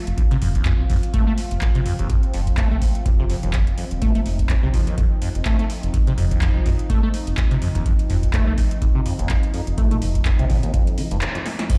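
A squelchy, resonant acid bass riff leads this playful, trippy acid house cut at 125 BPM in F mixolydian, its bright sawtooth tone saturated with overdrive and filter sweeps and colored by phaser, chorus, delay and sidechain pumping. Beneath it sit a deep, round analog bass, a detuned sawtooth pad with a moving notch and chorus roughened by vintage sampler grit, an up-front electronic kick, and an electro drum machine with a punchy snare, metallic hats, handclaps, toms and crash, all swung on the 16ths. The mix sounds like a big sound system in a bare room with large studio reverb, and a break at 11.2 seconds brings a band accent and then a drum fill at 11.5 seconds.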